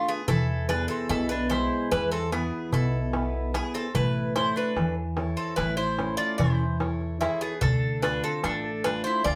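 A wet studio reverb wraps a band playing together in one room in this wistful, dark Greek folk passage, cut from a longer piece at 147 BPM in 9/8, where a metallic, double-strung bouzouki carries the melody up front over a bright bowl-back mandolin second line, a full-bodied fingerpicked jumbo steel-string guitar, a woody, thumpy pizzicato upright bass and a crisp metal-shell darbuka played with soft hands, the bass and darbuka entering at 0.3 s as the harmony moves from E to A and then Dm.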